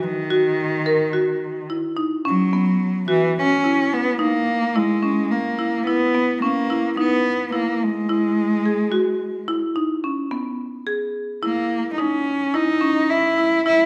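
A recital hall's wet reverb surrounds this short passage of contemporary chamber music, lending it a hopeful, shimmering atmosphere. At 108 BPM in an uneven 7/4 with a straight feel, a single bowed cello carries the melody from D#3 to E4, its tone nasal, focused and boxy, with vibrato colouring the line. Beside it, a marimba played with medium hard mallets on padauk bars sets out arpeggios between B3 and A#4, sounding woody, bright and airy. Both instruments sit up front and play from the opening moment, the marimba stopping at 13.8 seconds and the cello at 13.9. The harmony moves from B to F#7 and settles on C#m, in a fragment cut from a longer piece.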